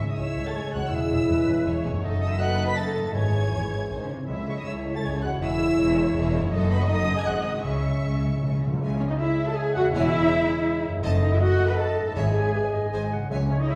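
Classical orchestral music in a dramatic, restless vein, this fast romantic movement in C# minor moves briskly in triple time at 161 BPM. A lush, rich violin section carries the melody from a distance, shaded by a dark clarinet, an airy silver flute and a second violin section in the background, while violas, a mellow bassoon and sustained French horn chords fill out the middle. A ringing concert harp plays arpeggios, and bowed double basses and cellos anchor the bass with expressive vibrato. Round, soft-mallet timpani come in at 3.1 seconds, return with a fill at 7.7 seconds, and a dark trumpet section adds stabs from 9.0 seconds. The harmony circles through C# minor, a diminished chord and G# dominant, all set in a reverberant recital hall heard from further back in the room, and the passage is cut from a longer piece.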